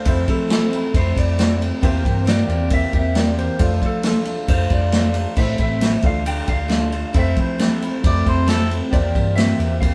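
An electric slide guitar carries the melody from the first moment, its dark, slightly broken-up tone touched with slapback echo, over a shimmering, octave-doubled twelve-string acoustic in the background, a worn, faintly detuned upright piano and a riffing electric guitar bathed in spring reverb. Just after, a round hollow-body bass and an up-front, roomy drum kit with dark cymbals and a punchy kick played with bundle sticks join in, driving this dusty, wistful folk and heartland rock excerpt at 135 BPM in 4/4. The chords move through Fmaj7, C7/E, Dm/F and Am, and a mellow harmonica with light vibrato slips in briefly at 8.1 seconds, all captured as a band playing live in one room with light reverb.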